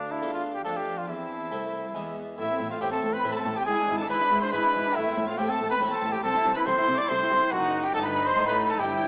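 A clear, up-front solo trumpet with light vibrato leads this driving, stormy baroque-style concerto fragment in A minor at 140 BPM in 3/4, set against two background violin sections (one expressive, one smooth and rich) carrying a melody and second line high above it, a distant viola section, a cello section bowing with soft-attack portamento and a round, plucked harpsichord, until a bowed double bass section joins at 2.4 s as a new section begins, the ensemble heard through wet recital-hall reverb with a small-speaker sound.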